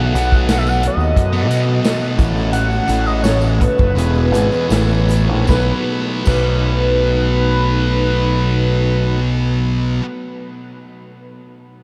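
A screaming, gritty synth lead with chorus, phaser and tape echo soars over a buzzy combo organ in the background, a double-tracked fuzz guitar riff and a growling, overdriven bass up front, opening this kaleidoscopic, trippy psychedelic rock excerpt as it slows through its first 5.5 seconds. A punchy, rolled-off vintage drum kit and a very quiet, jingly tambourine play from 0.2 until 6.5 seconds, while chords move from B7 through A6, Emaj7 and Amaj7 before returning to B7. The dreamy mix is soaked in huge ambient reverb.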